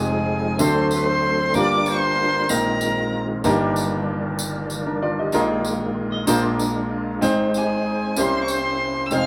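Jubilant and soulful, this slow gospel passage in Eb major moves at 63 BPM in a straight 6/8, cut from a longer piece. A natural, up-front baby grand piano carries the accompaniment throughout, while a fat, lightly overdriven tonewheel organ holds sustained chords with key click, third harmonic percussion, chorus vibrato and a slow rotary speaker. The melody belongs to a dark, woody solo violin, bowed with vibrato and placed up front, joined by a distant, roomy jazz-style horn section; both sound at the opening and return at 7.6 seconds. A jingly acoustic tambourine enters at 0.6 seconds, and a clean, picked electric guitar adds a brief second line around 6.1 seconds. The band plays live in one room, wrapped in a wet studio reverb, over a harmonic path running from Fm7 through D7, Gm7 and Ebmaj7/G to a closing C7b9.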